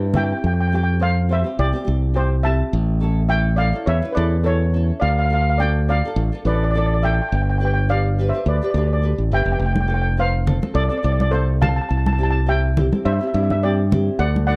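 A lightly swung 4/4 groove at 105 BPM drives this bouncy, sunny calypso in C major, cut from a longer piece, with a punchy, bright fingered electric bass sitting up front beneath a fingerpicked, double-tracked nylon-string guitar playing classical-style accompaniment through Fsus2, A, Dm, G, F and C. A shimmering, vintage-sounding double-seconds steel pan, struck with medium rubber sticks and placed up front, carries the melody. After a brief appearance at 0.1 seconds, damped, thin-skinned congas played with soft hands return at 9.8 seconds, all in a dry, close 1970s-style studio sound.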